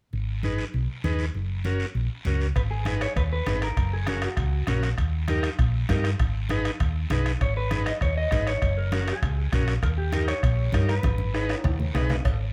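A straight, driving cumbia groove opens on a round, up-front hollow-body bass, raspy guiro, and congas tucked in the background, with a reedy combo organ thick with vibrato filling in the chords. At 2.6 seconds a soft-beater bombo and ringing timbales and cowbell join, and a dark, clean electric guitar carries the melody through a touch of spring reverb, dropping out briefly before returning. The fiery excerpt closes on a drum fill from 11.0 seconds, all set in a light reverb.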